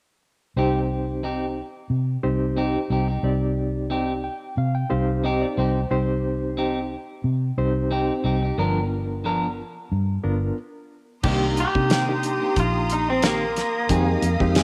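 Soulful and brooding, this straight-eighth soul blues excerpt at 90 BPM in C minor opens with a barky, lightly overdriven reed electric piano shimmering with fast tremolo, clean picked guitar stabs and a round, foam-muted fingered bass, adds a fill on the electric piano at 3.9 seconds and a stop at 10.6 seconds, then at 11.2 seconds brings in a damped 70s drum kit with a fat snare and lush bowed strings, followed at 11.6 seconds by a slightly broken-up, lo-fi guitar melody over Cm7 and Fm7 in light reverb.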